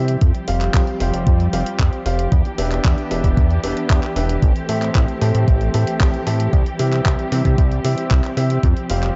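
An up-front, glossy synth bass with chorus and a nasal, plucky pulse-and-sawtooth tone drives this melodramatic, nostalgic italo disco excerpt in A minor at 114 BPM, alongside a thumpy electronic kick, sampler-style handclaps and hi-hat, boxy grand piano stabs with tape echo, and distant, veiled muted strings holding lush chords over Fsus2, Em7, Am7 and C in a dark, dry production.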